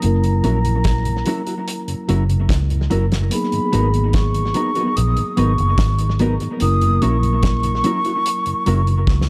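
Tender and sweet, this short lovers rock reggae passage, cut from a longer piece, moves at an unhurried 73 BPM in a straight 4/4. A breathy concert flute carries the melody high above the band, its vibrato and crisp attack softened by rolled-off highs and a touch of tape echo. Beneath it, a mellow tine electric piano and a very quiet tonewheel organ, with vibrato and a slow rotary speaker, fill out the chords, while a clean, compressed electric guitar adds stabs with subtle chorus and tape echo. A round, foam-muted fingered electric bass sits up front, and a dry, damped 70s drum kit with a fat snare and tight kick plays hi-hat, kick and snare before a drum fill at 9.1 seconds. The harmony sways between F#7 and G#m9 under light reverb, giving the whole a dark, warm production.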